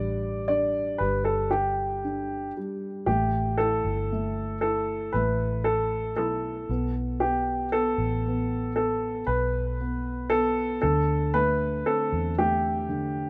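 In a straight, unhurried 4/4, this heartfelt and hopeful pop fragment sets a baby grand piano up front, its open tone and long sustain carrying the melody in the middle register. Beneath it, a felt-muted upright piano adds soft, mellow, intimate accompaniment with a thick felt character, while a vintage fingered electric bass sits forward in the mix, foam-muted, round and punchy. Light reverb and a small room ambience give the whole passage the rough, close feel of a home demo, moving from Gsus2 through A5 and Asus2 to D7sus4 across its 13.3 seconds.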